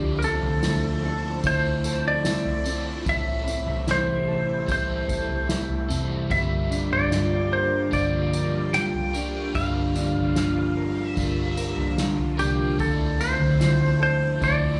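Dream pop at 74 BPM in G dorian, melancholic and ethereal, where a bright, twangy clean lap steel slides up front with analog delay over a crunchy overdriven guitar with tremolo and lush chorus, a dark mellow electric guitar's arpeggios, a swirling phased string machine, a round foam-muted vintage bass and a distant, roomy soft-mallet drum kit with punchy kick and tambourine, while a very quiet glassy harmonics texture drifts through from 6.8 to 8.9 seconds; the whole piece moves over Dm9, Am7 and Gm7 chords in light reverb.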